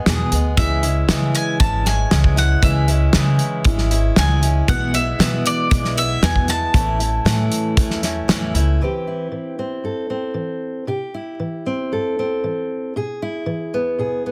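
A bright, double-strung bowl-back mandolin carries the melody from the opening, colored by analog delay. Beneath it are a boxy picked archtop guitar with audible finger squeak and a dark, thumpy upright bass plucked on gut strings. A loose small-room drum kit joins just after the start, sitting up front with a tight kick, a medium-tuned snare, hi-hat and a rolled-off top. This hopeful indie folk piece moves at 116 BPM in a straight 4/4, with the harmony passing from E through C#m and E/B to A. By 8.8 seconds the opening parts have dropped out, and a fingerpicked steel-string acoustic guitar with old strings and a woody concert body plays alone, up front, over a shift to C before returning to E/B. Light studio reverb surrounds the playing, the master is dense and heavily limited, and the recording is cut from a longer piece.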